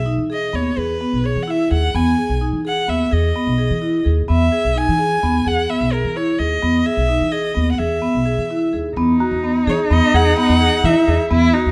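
A rich, focused bowed violin melody with vibrato opens over woody pizzicato upright bass and ringing, dry vibraphone arpeggios in this hopeful, playful contemporary chamber piece in 5/8 at 256 BPM in E lydian, with an expressive cello second line using portamento entering at 9.0 seconds as the harmony moves from Emaj7 to Emaj9, and a delicate, bell-like celesta sounding in the background from 9.2 seconds, captured with close, detailed microphones and light reverb.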